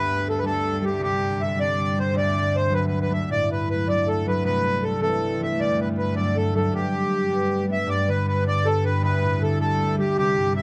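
A reedy accordion carries the melody up front from the very start of this lively, cheerful Celtic folk excerpt in 6/8, its slow beating giving the tone a gentle waver. Beneath it, a bright, fingerpicked concert harp rings out, and a clear symphonic string section holds a smooth, bowed drone with light vibrato, while the harmony moves through suspended and added-note chords on D and C, reaches G, and then returns to Dsus4, with the opening passage returning at 7.9 seconds. A wet studio reverb and a dark production flecked with vinyl crackle surround the short passage.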